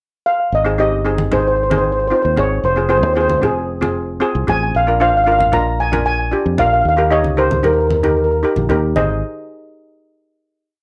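A mellow, airy double-seconds steel pan carries the melody from 0.3 seconds, played with soft rubber sticks and touched by a slapback echo as it spins short motifs into sentence-like phrases. This is a festive, sunny calypso in Ab major at 114 BPM in a straight 4/4, opening with a brief pickup before the verse begins. A second steel pan, a lead pan struck with hard rubber sticks, adds bright, metallic rhythmic chords in triad voicings, while a round, punchy fingered electric bass drives a syncopated figure up front. Low-tuned congas with a thick-skinned, saturated, compressed sound join at 1.2 seconds, played with hard hands in a loose pattern. The verse moves through Abmaj7, Fm7, Bb7 and Eb7 in a moderate studio room before the piece settles on a final Ab chord at 9.0 seconds.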